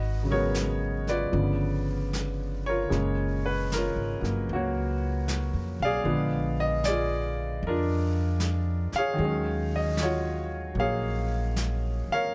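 A clear, intimate grand piano and a woody pizzicato upright bass open this smoky, melancholic jazz ballad together, with a brushed drum kit joining at 0.5 seconds. The piano sits up front in the accompanying role, its smooth, vintage tone carrying deep bass and audible action noise. The bass holds down the low end with steel strings and a warm pluck. The drums sit further back, with brushes on a medium-tuned snare and hi-hat giving a distant, roomy feel in a small space. Over a gently swung pulse, the harmony drifts from Abm11 through G7#11, Gbmaj9 and Bb7b9 before settling on Ebm11 in this short passage cut from a longer piece.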